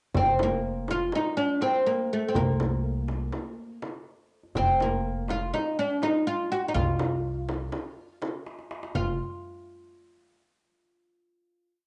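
A fretless oud leads this festive and passionate Turkish makam piece, its woody, double-strung plectrum tone sitting up front as it spins a modal hicaz melody full of ornaments, colored by a cassette tape character. Beneath it, a dark pizzicato upright bass on steel strings, also up front, lands on the low drum strokes in a straight 9/8. A small, bright frame drum opens the piece at 0.1 s with a low and high stroke pattern, and a deep clay-shell darbuka with a natural skin plays its own low and high strokes with hard hands, distant in the background as if from a large room. A drum fill at 8.5 s leads into a final note from 8.9 s. The whole piece has the intimate feel of a home cassette recording, with a dulled top end, moderate spring reverb and a small room ambience.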